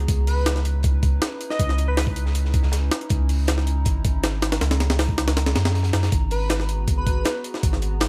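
Drum and bass in a jungle vein, this atmospheric, nostalgic fragment sets an up-front, gritty sampler-style kit with a thumpy kick against a dark, saturated breakbeat kit in the background, beneath a deep, round sub bass, a warbling, detuned tape-like pad with chorus and reverb sustaining C#m9 and then G#m9 chords, and an airy, dreamy lead with vibrato and dub echo that sounds from 0.3 to 2.0 seconds and returns at 6.3 seconds.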